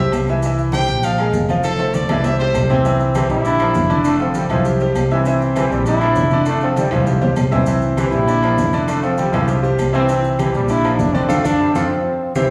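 A brilliant, up-front trombone carries the melody of this joyful, danceable salsa at 199 BPM in C major, taking over at 2.7 s from a forceful trumpet solo with scooped notes and vibrato, and joined at 3.1 s by a punchy, vintage trombone section in the background. A bright grand piano with short sustain and a growly, thumpy pizzicato upright bass drive the groove over ringing low-tuned congas, metal-shell timbales and agogo bells, grainy maracas and very quiet woody claves, with drum fills along the way and a closing band accent. The music sits in a wet large-studio reverb, heard from further back in the room, and is cut from a longer piece.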